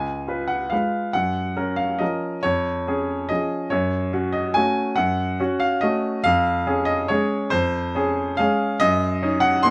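Close, detailed microphones and a light reverb place a clear, open baby grand piano up front in this short, graceful classical waltz fragment in D-flat major. Played solo at 141 BPM in 3/4 with uneven, rubato beats, the piano spans from Db2 to C6, its notes carrying a short sustain. The elegant harmony moves from Db7 through Gbmaj7 and a darker Gbm before settling on Ebm7/Gb at 8.8 seconds.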